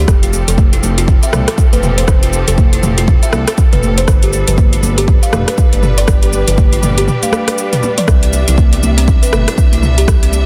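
A dense, heavily limited modern master with digital ambience carries this earthy, spiritual afro house excerpt at 120 BPM in 4/4, swung on the sixteenths. An overdriven, up-front electronic kick and a deep house kit with metallic hats, rim click, shaker and toms drive the groove, with bright congas in the background. A smooth, detuned sawtooth-and-square synth bass glides with portamento and tube saturation, while a buzzing, woody kalimba plays arpeggios through tape echo and a warm, bowed studio string section holds sustained chords, all three pumping with sidechain as the harmony moves from F to G7 to Cadd9, with a break from 7.1 to 8.1 seconds and a drum fill at 7.8 seconds.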